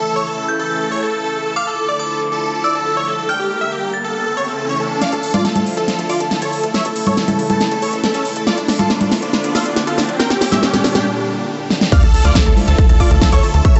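Uplifting trance at 139 BPM in D harmonic minor, this excerpt from a longer piece feels euphoric yet bittersweet, moving through chords such as Dmadd9, Gm and A. A huge, detuned supersaw lead carries the melody up front from the start, treated with phaser, delay and sidechain pumping, over a lush supersaw pad with slow-attack sustained chords, while a glassy, crystalline FM bell adds a second line that stops at 4.5 seconds. A riser and sub drop sit in the background from 3.3 seconds, and at 5.0 seconds the big-room drum kit arrives with a huge snare, crisp hats, congas, shaker and crash cymbal, joined by a tight, driving sequencer bass of sawtooth and square-wave filter plucks. The build-up includes drum fills and a short break before the drop at 11.9 seconds, where a punchy, layered electronic kick and a background unison pluck line enter. The production is dark and warm, with light reverb and digital ambience.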